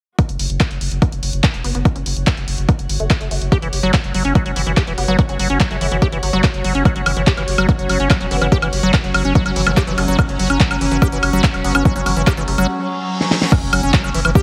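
Psychedelic trance at 144 BPM in 4/4, this alien, intense passage is cut from a longer piece and carries a heavily compressed radio sound with light reverb. A punchy, layered electronic kick sits up front with a big-room dance kit whose huge snare, handclaps, hi-hat, crash and woodblock share a studio reverb, while a round, deep analog bass holds the low end. A squelchy acid bass riff with chorus, tape echo and resonant filter sweeps rides the sidechain pumping, joined in the background by a juicy, detuned blip pluck treated with phaser, high-pass filter and dub echo. Beneath it all, a reedy chamber string section with light vibrato and gut-string tone fades in from the start, and from 7.5 seconds an evolving, morphing wavetable pad adds bright sustained chords through phaser and built-in reverb. Very quiet effects mark the close, with a reverse cymbal at 12.8 seconds, a short drum fill, and an impact at 13.5 seconds.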